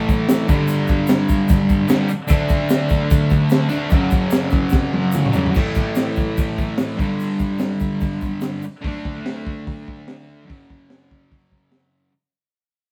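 Rowdy and swaggering, this clip from a longer garage rock track drives at 146 BPM in a straight 4/4. An up-front, double-tracked fuzz guitar picks a riff over G5, D5, F#5 and A5 power chords, backed by a gritty, saturated breakbeat kit with a punchy kick, high-tuned snare and dark cymbals, while a grainy egg shaker sits in the background until 8.7 s. The band plays live together in one room with moderate reverb, and after a drum fill at 4.7 s the music begins fading out at 5.5 s.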